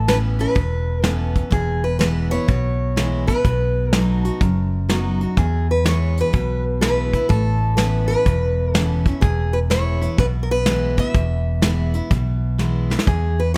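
Honky-tonk and classic country with a nostalgic, heartfelt swing, this short excerpt sets a boxy parlour acoustic guitar playing the picked melody up front over a full-bodied dreadnought acoustic with fresh strings picking the accompaniment. A dark, round fingered electric bass anchors the low end, while a soft brush kit with a medium-tuned snare and tight kick sits in a small room and adds a drum fill at 12.6 seconds. The sound is close and detailed, with light reverb.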